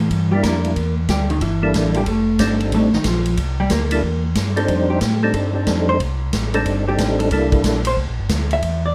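An up-front percussive tonewheel organ, round with third-harmonic percussion, slow rotary speaker and chorus vibrato, carries the melody in this swinging, soulful soul jazz organ trio fragment. It is joined by a mellow tonewheel organ bass, a clean, compressed hollow-body electric guitar that plays a solo throughout over a rootless C13 moving to F13 harmony, and an acoustic big-band drum kit with punchy kick, snare, hi-hat and ride, all set in a small room with a dark production.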